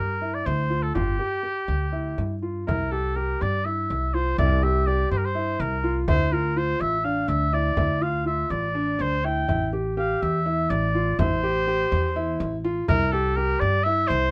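A warm, lightly vibrato-tinged oboe sings the classical-style melody up front in this hypnotic, pensive contemporary chamber piece in 7/8 at 247 BPM in eighths, cut from a longer work, over mellow, dark grand piano arpeggios with long sustain, a woody, growly pizzicato upright bass, and a soft-handed frame drum that enters in the background at 0.5 seconds, all caught by close, detailed microphones with light reverb.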